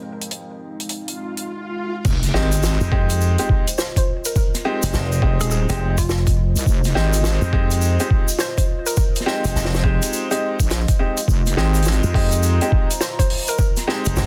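A swung 4/4 glitch hop groove opens on bright concert grand piano stabs with tape echo over a moody analog pad and a brief, nostalgic, lo-fi tape-like pad, all pumping to the sidechain in this funky, playful excerpt cut from a longer piece, and a compact cocktail drum kit with a high-tuned snare and dark cymbals joins at 0.2 seconds. A background electronic swell builds from 1.1 seconds into a drop with an impact at 2.0 seconds, where a gritty, overdriven, pitched-down kick and a heavy, detuned wobble bass come up front, joined by a grainy, distant egg shaker, with a punchy slap bass with an envelope filter following at 2.8 seconds. From 3.8 seconds a woody, wave-folded pluck with chorus and tape echo carries a mellow melody, all within a small room ambience and a dense, heavily limited modern master.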